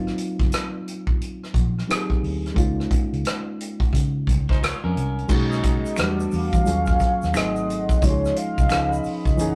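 A mellow, horn-like synth lead with a soft attack, vibrato and chorus carries the melody from 6.3 seconds in this sensual neo-soul R&B excerpt at 88 BPM in Db major, played over a reedy, slightly out-of-tune electric piano with light overdrive, a dark, round foam-muted fingered bass and a roomy acoustic drum kit played with bundle sticks, with dark cymbals and a punchy kick. A twangy electric guitar at the edge of break-up, bathed in spring reverb, slips in briefly at 4.5 seconds, then a shimmering pulse-width pad, egg shaker and finger snaps join at 5.3 seconds as the chords move through lush extended harmonies. The swung sixteenth-note feel and the rough rehearsal-room sound with tube saturation give it a loose, intimate character.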